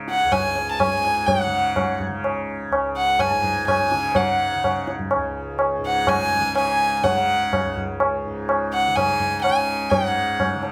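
Hindustani classical music at 125 BPM in 3/4, meditative and longing, cut from a longer piece. A softly plucked, buzzing tanpura drone shimmers underneath while a rich, gut-string violin in period style carries the melody up front, bowed by one player, alongside ringing, low-tuned tabla. A very quiet, breathing pedal harmonium adds a second line until 7.8 s, all set in a moderate studio reverb.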